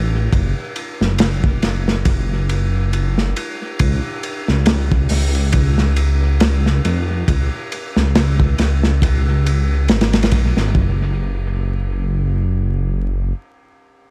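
A deep, rumbling detuned sawtooth bass opens this brooding trip hop excerpt, its beating tone sitting up front in F# harmonic minor at a slow 69 BPM in 4/4. At 0.3 seconds a crunchy breakbeat kit joins, its acoustic small-room sound saturated and gritty, with a tight kick, medium-tuned snare, hi-hat and ride carrying dark cymbals and a rolled-off top. The drums carry a dub echo and a gentle 16th-note swing that gives the groove a hypnotic, lazy sway. The bass has a sustained tone with a fast attack, low and murky beneath the beat. The piece moves into a new section at 10.8 seconds, and the drums drop out at 10.9 seconds, leaving the bass alone until it stops at 13.3 seconds. The mix is dry in terms of reverb but heavy with echo, and vinyl crackle lends the whole recording a dusty, late-night haze.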